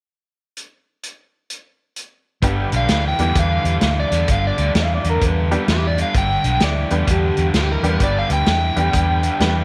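A laid-back, swaggering electric blues shuffle with a swung feel, this excerpt opens with a vintage drum kit alone, its punchy kick, medium-tuned snare and hi-hat sitting up front with a rolled-off top in a small room. At 2.4 s the band lands on a G chord: a round, foam-muted electric bass up front, a bright cranked stack guitar riff with overdrive, and a detuned, jangly honky-tonk upright piano with short sustain. From 2.8 s a dark overdriven slide guitar carries the melody through tape echo, and from 4.8 s a slightly broken-up, lo-fi guitar through a small old amp adds a second line, all under light reverb.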